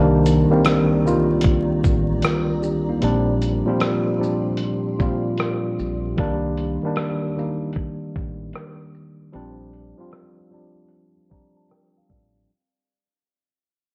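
The recording sounds hazy and worn, with warbling old tape, vinyl crackle, pitch drift, a low-pass filter and a moderate plate reverb. A filter sweep and a fade-out run across the whole piece, which is cut from a longer one. This melancholic lo-fi hip hop piece moves with a swung 16th-note feel in 4/4. A mellow, slightly out-of-tune tine electric piano sits up front, playing Cm9 and Bb69 chords through a cassette-tape tone, while a deep, round fingered electric bass gives dark support underneath. A dusty, sampler-style soul drum kit of kick, hi-hat, rim click and shaker adds gritty 12-bit character and a thumpy kick, sounding compressed and re-recorded in a large room. In the background, a cloudy granular pad holds blurred, detuned chords with its own reverb before it stops at 6.1 seconds.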